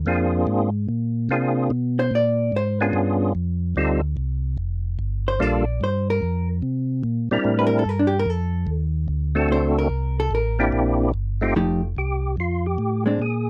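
A swinging 4/4 groove at 146 BPM drives this soulful soul jazz organ trio, cut from a longer piece in F mixolydian. A mellow, round, dark tonewheel organ carries the bass line through a slow rotary speaker, with audible key click. Above it, a second organ plays the melody in a fat, percussive voice with third harmonic percussion, chorus vibrato and the same slow rotary turn. At 2.0 seconds a dark, picked, compressed hollow-body electric guitar enters up front, soloing through the opening section until 11.6 seconds over changes such as Bb9, Bdim7, F9, Gm7 and C9. The harmony moves through F7, D7 and C9 before settling on F9 as a brief closing section begins. The sound is dry and close, like a 1970s studio session, with little reverb.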